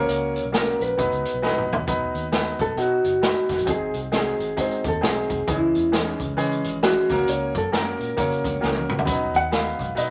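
Uptempo 1960s-style soul with a danceable, uplifting swing, this short excerpt features a mellow, clean electric guitar carrying the melody over bright baby grand piano chords with audible action noise and a round, foam-muted fingered bass sitting low in the mix. A gritty, saturated garage drum kit with a boomy kick sits up front, marking a fill at 1.4 seconds before the guitar moves into a dark, compressed solo from 1.9 seconds, with another fill at 8.6 seconds. Moderate club reverb wraps the whole ensemble in a club-sized room.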